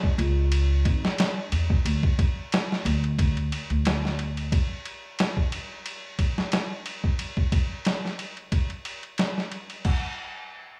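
A gritty, pitched-down trip hop drum kit opens this dark, cinematic excerpt, its thumpy kick, medium-tuned snare, ride and crash cymbals sounding compressed and tape-warm as if re-recorded in a small room, while a woody, gut-strung upright bass plucks low notes up front from 0.2 to 4.5 seconds. Set at 90 BPM in 4/4 with a light swing on the sixteenths, the groove carries on with drums alone until 10.0 seconds, dry and close with only a small room's ambience around it.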